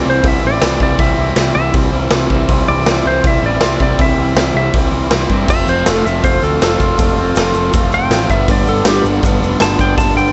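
A straight 4/4 pulse at 160 BPM drives this swaggering, gritty garage rock excerpt, where a saturated, punchy drum kit in a pumping stone room and an overdriven, double-tracked guitar riff sit up front, a growling overdriven picked bass holds the low end, a clean, twangy lap steel slide carries the melody, and a grainy tube shaker joins very quietly at 5.5 seconds as the chords move from C to F and then G at 8.3 seconds, all in a dry, dark-topped mix.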